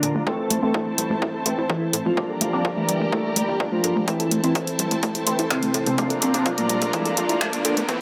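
A straight 4/4 pulse at 126 BPM drives this melancholic, dramatic melodic techno build-up in A phrygian, with a punchy, overdriven electronic kick entering at 0.3 s over a deep house kit of finger snaps and hi-hats that sits up front, the hats pumping against the kick. Beneath them a very quiet, tight sequencer bass adds a plucky sawtooth drive, while a nasal, detuned sequenced synth spins arpeggios in the background and a sync-sweep polysynth fires edgy stabs, both shaped by filter sweeps across the build. A soft, octave-layered synth lead carries the melody with a round, dark tone coloured by chorus, phaser and dub echo, and an airy, dreamy lead traces a second line an octave lower with a bright, breathy shimmer. A lush symphonic string section holds sustained chords under a low-pass filter as the harmony moves from Am to Gm, back to Am and then to Bb. A huge ambient reverb surrounds the mix, and a very quiet riser enters at 6.0 s to push this excerpt toward its next section.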